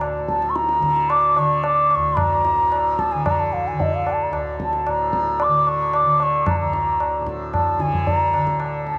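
A longing, solemn mood hangs over this brief fragment of Hindustani classical music, set in raga todi and moving in a straight, steady four. A softly plucked tanpura drone buzzes and shimmers low beneath everything from the opening moment, sitting quietly in the background. A high-tuned tabla with a short ring keeps time throughout, its acoustic sound carrying a live-room character. At 0.3 seconds the bansuri enters, its airy, hollow bamboo tone shaped by a soft attack and gentle vibrato, placed up front yet with a faintly distant quality. A huge ambient reverb with a long 6.5-second decay wraps the recording in a vast space.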